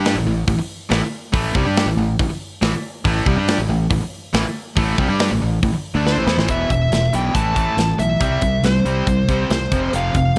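Set in a small room ambience, this menacing, aggressive hard rock excerpt at 140 BPM in A minor pairs a bright, overdriven cranked stack guitar riff with a high-gain distorted guitar sitting in the background, over a round, dark fingered electric bass and an up-front, tight metal drum kit with a medium-tuned snare and rolled-off top, until a drum fill at 6.1 seconds brings in a smooth overdriven lead guitar with slapback echo as the chords move from Am through E5, A5, C and F5.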